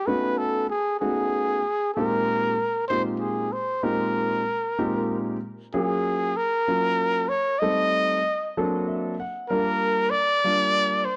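In a straight-feel 6/8, this slick, bright jazz excerpt sets a whispered, vibrato-laden breathy trumpet up front over a warm grand piano whose long sustain and audible action noise feel close and intimate, with the piano slipping in a brief fill at 8.6 seconds, all captured in a dry, close 1970s-style studio sound.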